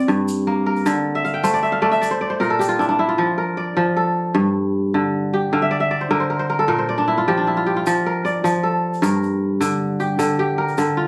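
Hypnotic and warm, this West African traditional piece, cut from a longer performance, moves at 103 BPM in a straight 12/8 in F major, with a fingerpicked acoustic kora spinning ringing, crisp arpeggios up front across its range and adding fills as the harmony passes through chords such as Gm, Bb, F and Dm11. A close, grainy egg shaker adds bright percussion beneath it, dropping out at 2.9 seconds and returning at 7.9 seconds. The phone-in-the-room sound carries light studio reverb and compression, and the music moves into a new section at 3.2 seconds.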